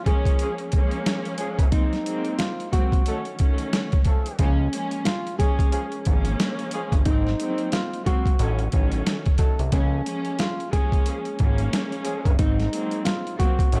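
Warm and soulful, this swung boom-bap hip-hop excerpt at 90 BPM in Db major opens with a fingerpicked nylon-string guitar melody touched by digital delay over dark, bowed strings with a cassette-tape tint, a gritty, pitched-down sampler drum kit with a thumpy kick up front, and mellow, octave-doubled horn stabs, before a fat, detuned analog bass with a filter sweep arrives at 4.4 s, the dark, warm mix sitting in studio reverb as the chords cycle through Db6, Ab9 and Gbm6.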